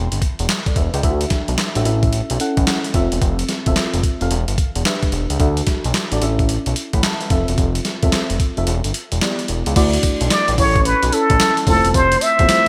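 A 16th-note swing at 110 BPM in 4/4 gives this short new jack swing cut from a longer R&B piece a slick, bouncy strut. The boom bap sampler-style drum kit sits up front with a thumpy kick, a medium-tuned snare, hi-hat, handclaps, tambourine and crash cymbal, all pitched down, compressed and gritty, with gated reverb and a large-room character; the kick drops out between 8.7 and 9.8 seconds. Beneath it, a fat analog bass is also up front, thick and nasal, with detuned sawtooth and square-wave tones, saturation and a plucky filter snap. A mellow FM electric piano supplies round, dark, full-bodied chords with a touch of chorus and a faint noise layer, cycling through Em, Dadd9, A and Fmaj7. At 10.3 seconds a trumpet with plunger mute takes the melody, breathy and muted with a wah-wah colour, vibrato and a smooth jazz-style top. The whole mix has a bright 1980s-style digital sheen with light reverb and digital ambience.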